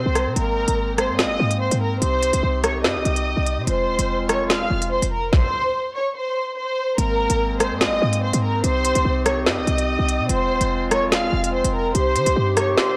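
Drill hip hop at 145 BPM in a half-time feel, this ominous, tense passage in C phrygian is cut from a longer piece and sits on a dry, gritty hardware recording, with chords moving through Abadd9, Cm and Fm and a brief break at 5.3 seconds. A lush, bowed violin section with vibrato carries the melody up front through a low-pass filter, over mellow, vintage woodwinds holding sustained chords. Beneath them, a punchy, tight 808-style bass with a noise layer and fast attack joins a produced electronic drill kit whose hard-clipped kick, woody snare, rim click and crisp hats, re-recorded in a large room, enter at 0.2 seconds.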